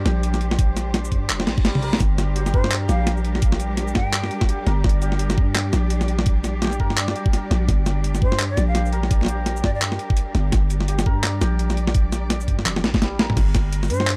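A layered, knocking electronic kick leads this cinematic half-time drum and bass excerpt, sitting up front with a gritty, overdriven boom bap sampler-style kit of snare, hi-hat, shaker, handclaps, toms and crash, and a growling, buzzy 808-style bass; the kick drops out briefly during a drum fill at 1.7 seconds. Behind them, a distant, lush cello section holds sustained chords with sidechain pumping, a shimmering, hammered santur plays arpeggios through dub echo, and a faint electronic reverse cymbal sounds at 1.5 seconds. A breathy jazz flute with vibrato appears in short background phrases from 2.5 seconds, also echoed, in a dark, dry and spacious mix.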